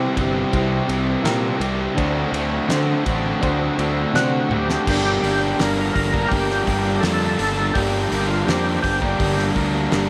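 A moderate echo-chamber reverb surrounds this gritty, swaggering classic rock fragment at 83 BPM in 4/4, which moves from C to D7 before settling into G minor at 4.9 s. Two overdriven semi-hollow guitars play riffs, one bright and up front and the other warm in the background, over a very quiet double-tracked fuzz guitar, a dark, round fuzz bass, a reedy, barky electric piano with fast tremolo, and a cloth-damped, thuddy drum kit with a fat snare and a rolled-off top that plays a fill just before the key change. At 4.2 s a thick, percussive, overdriven tonewheel organ takes the melody, with key click, a slow rotary speaker and slapback echo.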